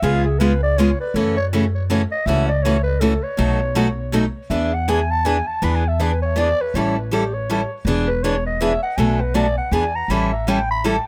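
A swung waltz drives this playful, lively excerpt of acoustic string swing, with a picked steel-string acoustic guitar up front, bright with fresh strings and a touch of finger squeak, and a pizzicato upright bass of woody, thumpy gut strings underneath. Across the full 11.1 seconds, a growling clarinet takes the solo, its raspy, gritty jazz tone softened by mellow vibrato and trailed by tape echo. The close, detailed sound carries little reverb, keeping every part immediate.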